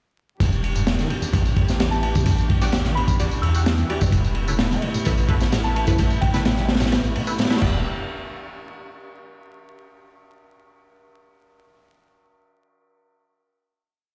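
A gritty, energetic breakbeat track in E minor at 129 BPM opens at 0.4 seconds with a crunchy, up-front looped break with edits, its tight kick, high-tuned snare and dark cymbals rolled off on top, joined by an analog tambourine layer, a deep gliding sub bass with tube saturation, a squelchy distorted acid line with accents and slides, and distant, reedy bowed strings holding Em7 and Asus2/E chords with sampler grit and sidechain pumping. From 1.9 seconds a soft FM bell plays short answering phrases through dub echo, and from 2.6 seconds muted, detuned chord stabs with phaser and dub echo punctuate the groove in syncopation. The whole mix sits in a large studio reverb with vinyl crackle, as if played on a big sound system in a bare room, before a final hit at 7.8 seconds.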